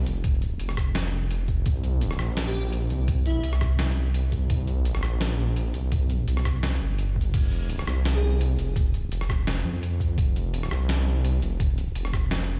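A half-time drum and bass groove at 169 BPM with a light 16th-note swing drives this spacious, tense cut from a longer piece, where a deep, rumbling, detuned saw bass sits up front between F1 and F2, a thumpy, pitched-down, tape-warm electronic kick and a gritty, compressed boom bap sampler-style kit of crash, hi-hat, rim click and medium-tuned snare carry small-room ambience, and an airy, dreamy lead with chorus and delay drifts in briefly at 2.5 seconds and again at 8.1 seconds over F5 and C5 chords, the whole mix sounding as if played on a big sound system in a bare room.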